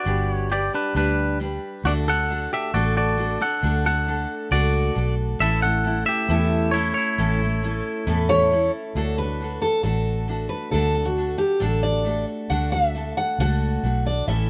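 This honky-tonk and classic country excerpt moves at 135 BPM in a straight 4/4 in D major, with a sunny, heartfelt mood. A twangy, clean, compressed electric guitar carries a solo from the start until about 9 seconds, riding over a jumbo acoustic guitar that picks a warm, full-bodied accompaniment up front. Underneath, a vintage fingered electric bass with a foam-muted, round, dark tone anchors the low end. At 8.3 seconds a bright dreadnought acoustic guitar takes over the melody as the music moves into a new section around 9 seconds. The harmony moves from G to D to A before returning to D, and a light reverb gives the mix a gentle sense of space.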